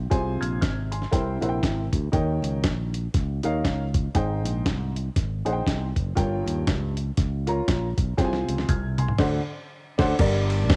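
Swung eighth notes drive this uptempo gospel cut in 4/4, carrying a fervent, soulful mood through a short stretch lifted from a longer piece. A gritty, sampler-style soul drum kit sits up front with a thumpy kick, a medium-tuned snare and a compressed, tape-warm sound, working across hi-hat, ride, crash and toms. A bright, punchy fingered electric bass holds the low end with a direct, present tone, while a dark upright piano fills in the harmony with a woody, intimate, vintage character, its action noise clearly audible. The chords move from Fm through C7, Eb7, Abmaj7 and Gm7b5 before turning to Fm/C, D7 and Gm. A drum fill runs from 8.2 to 10.2 seconds, and the whole band hits an accent from 9.2 seconds. The sound carries the feel of a home cassette recording, set in a digital ambience.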